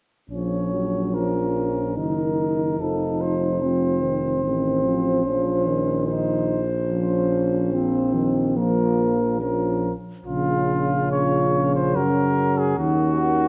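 Moderate recital-hall reverb surrounds this dark, grave, solemn classical brass quintet passage in Bb minor at 72 BPM in 3/4, where a distant, roomy flugelhorn carries the second line over a mellow French horn with light vibrato, a smooth-topped warm trombone and a clear, soft-attacked, vintage bass trombone up front, moving from Bb minor through F7 and back to Bb minor until a punchy, forward cornet with a gentle vibrato takes the melody at 10.3 s, with the harmony turning to Gb at 12.0 s.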